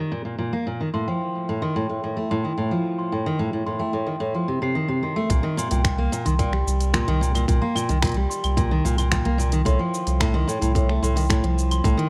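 A fingerpicked steel-string acoustic guitar opens at 0.0 seconds, playing full-bodied, jumbo-toned arpeggios with fresh strings, softened by a low-pass filter and trailed by delay. At 0.9 seconds a glockenspiel struck with rubber mallets adds a mellow, bell-like second line high above, its ringing metallic notes also carried by delay. This is wistful, autumnal folktronica in C dorian at 110 BPM in a straight 4/4, moving from Bbsus4 and F7 to Cm7 and F7/C. At 5.3 seconds a round sine sub bass enters up front on a deep, sustained C2, joined by a tight electronic kick in the background and a tape-warm electronic kit of claves, finger snaps, smooth hi-hat and shaker, with low-pass filtering on its hats and percussion. A light reverb surrounds the mix, and the passage is cut from a longer piece.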